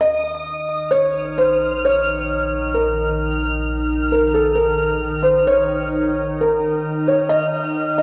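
A cassette home recording steeped in wet spring reverb carries this peaceful, weightless ambient excerpt at 66 BPM, tuned to A4 = 435 Hz and moving from Bbm to Ebsus2, where a soft, felt-muted upright piano with audible action noise and tape echo sits up front over a deep, ominous, ring-modulated rumbling bass drone, a bright, reversed granular texture high on F6, and a calm, organ-like drone with ensemble chorus that enters at 0.6 seconds.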